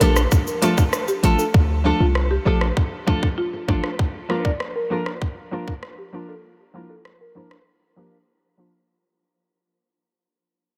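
Light reverb gives this short dancehall clip a roomy gloss, and a fade-out and filter sweep run through its full length. The mood is bouncy and tough, at 98 BPM in a straight 4/4, with the harmony moving from D minor to B-flat at 4.0 s. Up front, a hard-hitting 808-style bass, punchy and heavy with a sine body and noise layer, anchors the low end until it stops at 3.8 s. Beside it sits an electronic island pop drum kit of tight kick, warm hats, rim click and shaker, re-recorded in a large room. A buzzing marimba carries the melody with a dry, airy hardwood tone through tape echo, while a woody, warbling FM synth pluck with chorus and sidechain pumping fills in the accompaniment. Bright, fingerpicked nylon-string guitar arpeggios with subtle chorus and tape echo round out the texture before a brief break at 8.3 s.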